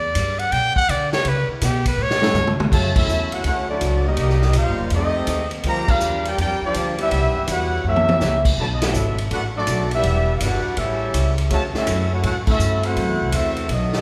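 A recital hall's moderate reverb surrounds this brassy, joyful big band swing excerpt, cut from a longer piece and set in D major at 164 BPM with a firm swing on the eighth notes. A solo trumpet opens with scooped, jazz-styled notes over woody, growly pizzicato upright bass and a distant, roomy drum kit with a punchy kick and rolled-off top. A drum fill and a brief touch of baby grand piano in the background carry the band into the fuller section at 2.7 seconds, where a smooth-topped trumpet section with vibrato takes the melody up front. Beneath it, a bright, close-miked trombone section plays a second line, and the full band hits accents at moments such as 5.8 seconds. The harmony moves through rich jazz changes like Dmaj9, F#7b9 and Bm7, with another drum fill near the middle keeping the momentum buoyant.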